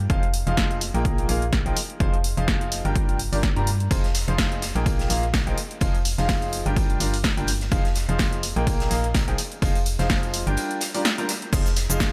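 A swung 126 BPM groove from an overdriven electronic kick and a punchy analog drum machine, with its up-front snare, hi-hat, shaker and crash, drives this energetic, soulful piano house piece in F dorian, cut from a longer track. A clear, intimate baby grand, with audible action noise and long sustain, plays the riff through lush chorus, delay and sidechain pumping over a hollow, dark, organ-like FM bass that pumps alongside it, cycling through Fm7, Bb7sus4 and Gm7. At 3.9 s a gritty, oversized low-tuned acoustic kit joins in the background, adding a fat snare, filtered hi-hat and a pumping big-room sound within the light reverb of a small room.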